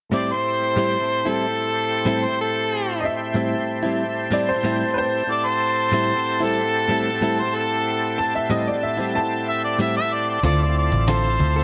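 Over a straight-eighth soul-blues groove, a soulful, mournful clear harmonica sings a smooth, scooped, lightly overdriven melody up front, with a shouting tonewheel organ swirling through slow rotary speaker and chorus vibrato, distant warm horn chords, bright compressed stabs from a direct-recorded clean electric guitar with analog delay, and a worn, slightly detuned upright piano adding a second line from 3.0 to 9.5 seconds, before a round, foam-muted electric bass and a faint, woody cajon slip in at 10.4 seconds as the chords move from Am7 to Dm7, all of it set in a moderate echo chamber.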